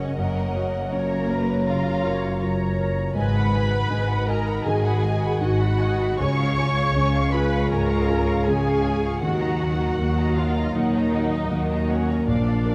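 Steeped in a wet scoring-stage reverb, this moving, hopeful cinematic film-score excerpt unfolds at a rubato 79 BPM in Eb minor. A close, lush con sordino violin section carries the melody over a more distant muted second violin line, with veiled violas and an intimate grand piano with audible action noise in accompaniment. Bright, ringing harp arpeggios, a background bed of soft-edged cellos and double basses, and a mellow French horn section sustaining chords from 0.2 s complete the texture, all passing through Gbmaj7, Abm7, Db and Ebm.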